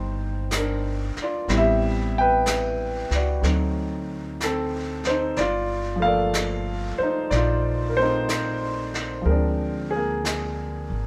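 A grand piano and an upright bass open together, setting a smoky, intimate jazz ballad in G minor at a slow 62 BPM in 4/4, with a swung eighth-note feel. The piano sits up front with a natural, warm tone, carrying the accompaniment from Eb3 to G5, while the pizzicato bass on steel strings gives a woody, thumpy low end between G1 and D2. At 0.5 seconds a vintage brush kit joins, playing brushed snare, snare and hi-hat with a mid-forward, medium-tuned snare and a rolled-off top in a studio room. The harmony moves through Cm9, Am7 and D7b9 before settling on Gm9, then turns to Dm7b5 near the close. Light reverb adds a soft sense of space to this brief passage, which is cut from a longer piece.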